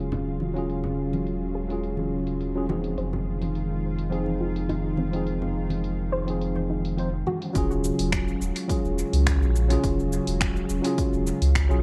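A worn, slightly out-of-tune tine electric piano sits up front with dub echo, over a deep, round sine sub bass and a thick, detuned unison pad warbling through chorus, in this smooth, wistful sunset chillout excerpt at 105 BPM in Eb dorian. An overdriven deep house kit of cabasa, finger snaps and filtered hi-hat, with bright congas in the background, carries a light 16th-note swing, while a dark triangle-and-saw pluck plays filter-swept arpeggios until about 7.5 seconds. At 7.6 seconds a punchy, overdriven electronic kick enters as the chords return to Ebm11, all inside an echo-heavy mix with spring reverb.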